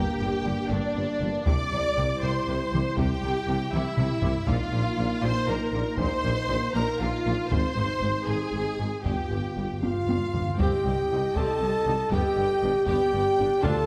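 Awash in scoring-stage reverb, this excerpt of epic, heroic orchestral film score moves at 79 BPM in 6/8 in G phrygian, with a warm, smoothly bowed violin melody over a lush second violin line, expressive viola accompaniment with portamento, mellow close-miked French horn chords, and a bass of tuba, distant double basses and background cellos, while a heavy-stick taiko ensemble drives from 1.2 s, round soft-mallet timpani enter at 9.1 s, and a vibrato-laden solo trumpet adds stabs from 9.8 s.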